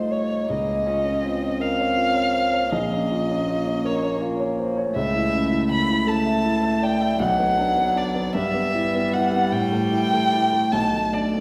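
A wet recital-hall reverb surrounds this short cut from a longer piece, giving the trio the spacious bloom of a church or concert hall. It is a slow, romantic classical movement in Bb minor and 6/8, moving at about 53 dotted-quarter beats per minute with uneven, rubato pacing and a yearning, elegiac mood. The violin carries the melody up front and close, its woody, shadowed tone coloured by vibrato and a sul tasto bow. Beneath it the cello sings a second line with a soft attack and a pure, floating sul tasto sound. The baby grand piano, also up front, supplies a mellow, smooth accompaniment with a vintage character and long sustain, reaching down to a low Bb1. The harmony drifts from Bbm/Db and Bbm toward A/C#, Bm and Em/G before settling on Bm7 near 10.7 seconds, with all three players sounding together for the full 11.4 seconds.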